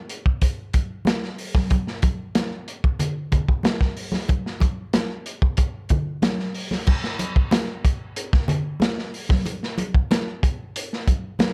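Funk breakbeat with an energetic, strutting mood in a straight 4/4 feel, cut from a longer piece. A crunchy acoustic drum kit enters at 0.1 seconds and sits up front, its tight kick, medium-tuned snare, hi-hat and crash cymbal all carrying a saturated, gritty grain with dark cymbals and a rolled-off top. Congas join at 0.7 seconds, lower in the balance, with thick skins, hard hands and a compressed, saturated tone. The groove shifts into a second section at 6.9 seconds, and both parts play through to the close at 11.5 seconds. Light reverb suggests a studio room, and the overall production leans dark and warm.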